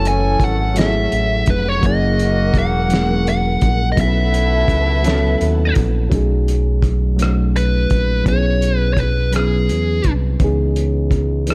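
A slow, straight 6/8 sway at 56 BPM carries this sultry, late-night R&B excerpt, where a muffled, cloth-damped drum kit with a fat snare and tight kick sits under an up-front, sawtooth-edged synth bass, a reedy, lightly overdriven electric piano with phaser, and a dark, compressed fuzz lead guitar singing the melody, while a lush, distant string section holds chords until 6.1 s and a mellow horn section adds tight background stabs until 5.7 s as the harmony moves from F#m9 through B13 toward C#m9.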